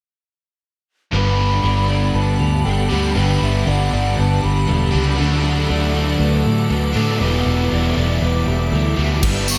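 Wistful and dreamy, this shoegaze and dream pop excerpt at 119 BPM sets a breathy, mellow concert flute melody over an icy, crystalline glass pad, lo-fi chorused guitar arpeggios, three overdriven guitar riffs (one bright and double-tracked, one crunchy, one hollow-bodied and very quiet) and a round, foam-muted bass that sits up front, all moving through Gmaj7, D and Em7 in a lush hall reverb, before a bright, polished gated drum kit arrives at 9.2 seconds and a jingly tambourine joins at 9.5.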